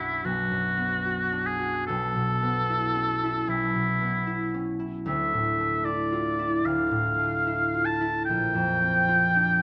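Classical impressionist duo, wistful and mysterious in a loose rubato 4/4, where a clear, vibrato-touched oboe with a soft attack and vintage character sings the melody up front over a ringing, fingerpicked concert harp, both captured close and detailed in light reverb across this brief fragment of a longer piece.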